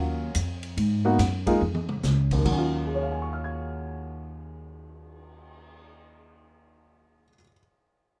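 Swinging at 142 BPM in Eb minor, this smoky, cool small-group jazz fragment puts an intimate baby grand piano, with audible action noise and short sustain, up front beside a woody pizzicato upright bass, while a distant, roomy drum kit with a boomy kick and rolled-off top plays a fill at 1.6 seconds before dropping out at 5.8 seconds, the whole set in light reverb over Ebm9, Abm7 and Db chords.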